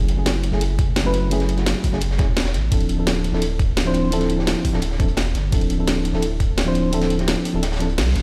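Liquid drum and bass in a lush, soulful mood, where a round, warbling FM electric piano with chorus and delay floats over a deep sine-like sub bass with an octave layer, while a layered electronic kit with a cracking snare and ride sits atop a dark, saturated acoustic breakbeat, and a thumpy, tape-warm kick pulses from 0.8 s until it drops out at 6.9 s before a band accent at 8.0 s, all washed in a large studio reverb on a big sound system in a bare room.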